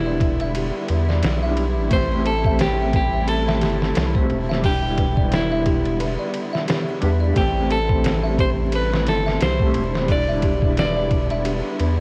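Trip hop at 88 BPM in A minor, dark and cinematic, where a gritty, pitched-down sampler drum kit with a thumpy kick and a round, deep analog bass sit up front beneath a picked clean electric guitar melody with dub echo, a fingered electric guitar accompaniment carrying tremolo, 12-bit sampler grit and tape echo, soft bowed strings, a tinkling, slightly out-of-tune music box playing arpeggios, and a breathy wind-like noise texture that arrives at 8.3 seconds, all moving between Em7 and Am7 under a worn cassette sheen of vinyl crackle and warbly pitch drift.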